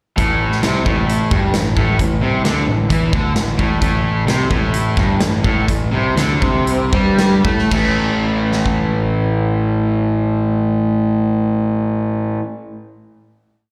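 A swaggering, driving classic rock piece in A mixolydian, running at 111-132 BPM in a straight 4/4, where two overdriven semi-hollow guitars play a single-note riff, one bright and up front, the other dark and in the background, while a fuzzy, overdriven electric bass doubles the riff with simple root-and-fifth playing. A big acoustic rock kit with a punchy kick, medium-tuned snare and bright cymbals drives a rock groove until 8.8 seconds, as the riff slows from 3.8 seconds and resolves into a final A chord at 7.7 seconds. The sound is that of a live gig heard through a venue's PA, with light recital-hall reverb.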